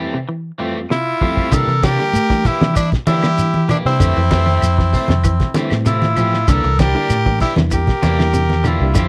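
Afrobeat at 97 BPM in C mixolydian, joyful and driving, this excerpt opens with a break in which a reedy electric piano with fast tremolo, a bright, clean semi-hollow guitar picking arpeggios and a twangy, slightly broken-up guitar playing stabs through lush chorus and slapback echo sit over Fmaj9, before a drum fill at 0.9 s brings in a raspy, up-front tenor saxophone melody and a brilliant trumpet second line with vibrato and scooped notes. From 1.5 s the groove settles on C9 and Fmaj9, with a round, dark fingered bass, a muffled, cloth-damped drum kit with a fat snare and tight kick, grainy shekere and woody claves, joined at 1.8 s by low-tuned, thick-skinned congas in the background. The sound is a dry, close 1970s-style studio recording.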